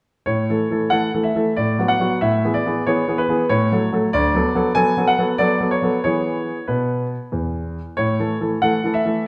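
In a 3/4 at 93 BPM with a flexible rubato feel, this cheerful, playful classical-period sonatina in A major sets a clear, open concert grand piano up front as a solo voice from 0.3 to 9.2 seconds, its deep bass reaching down to D2 and its melody up to G#5, moving from A through Bm7/A, E/A and F#m/A to E before resolving home on A at 8.0 seconds, all bathed in a wet recital hall reverb in a short passage cut from a longer piece.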